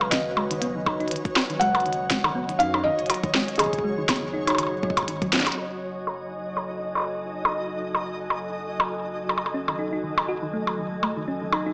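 A soft, intimate felt-muted upright piano with vintage sampler grit and delay opens this intricate, melancholic IDM excerpt at 121 BPM. Its melody sits over a dark, glassy FM pad, a round sub bass in the background, a flickering grainy texture and clicky, up-front glitchy drums with a tiny snare, while a tine-like synth pluck and a deep electronic kick join almost at once. After a drum fill at 5.3 seconds the piano and kick have finished, and the swung second section rests on the pad, bass and texture as a filter sweep works over the drums, until the chorused, tape-echoed pluck returns at 9.5 seconds, all heard through a small speaker in a moderate echo chamber.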